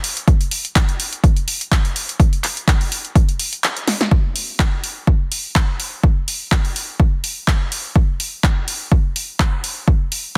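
House groove at 125 BPM in 4/4, with a sensual, funky lilt from a light swing on the sixteenths, taken from a longer piece. An analog drum machine carries the handclaps, hi-hat and a dry, punchy snare, overdriven and up front, and the hats breathe with sidechain pumping. A separate electronic kick, also overdriven and sitting forward, enters at 0.3 seconds and drives the pulse. The kick drops out briefly around 3.6 seconds as a drum fill lands at 3.9, handing the groove into the second section from 4.1 seconds. A digital ambience surrounds the kit, and the master is dense and heavily limited in a modern style.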